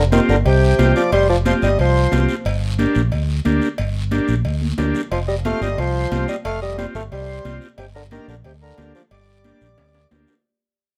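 A warm bassoon with light vibrato carries the melody up front in this driving, danceable cumbia, touched by tape echo and shadowed by a reedy, full accordion, with both parts pausing between 2.3 and 5.1 seconds. A fingered electric bass sits prominently underneath while a buzzy vintage combo organ comps over an Fsus2 to G minor change. Bright, high-tuned congas and ringing cowbell and timbales keep the groove in the background, joined by a raspy, close and dry guiro, with drum fills at 4.6 seconds and near the close of this short fading cut from a longer piece.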